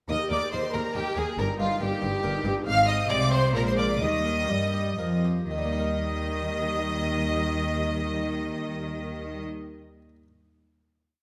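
An up-front, dark double bass section doubles the bass line beneath rich cellos playing repeated, walking and sustained bass notes in this complete, festive and brilliant baroque-style concerto movement in triple time. A single distant violin and an expressive chamber violin section double the tune at the octave under a smooth studio violin section carrying the high melody, while a lush viola section rocks a two-note figure and a round Flemish-style harpsichord ripples in the background, set in a moderate scoring-stage reverb. The ritornello slows from 2.0 seconds into a final chord at 5.5 seconds, and the harpsichord rings on until 10.3 seconds.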